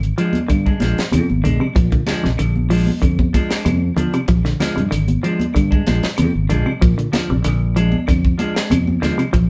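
A band playing live in one room, with moderate studio reverb, gives this short afrobeat excerpt a natural, live sound. The groove is funky and hypnotic, moving at 95 BPM in a straight 4/4 and resting on a single Bb7 chord in Bb mixolydian. Up front, a dry, airy and polished funk drum kit drives the beat with hi-hat, a tight kick and a high-tuned snare, alongside a round, fingered electric bass that moves between Ab1 and Bb2. A dark, semi-hollow guitar plays fingered arpeggios between C3 and F3, while a bright, clean guitar adds picked stabs from 0.2 s. In the background, thick-skinned, high-tuned congas played with hard hands join at 0.3 s, and woody claves enter at 0.5 s, sounding distant, as if in a large room.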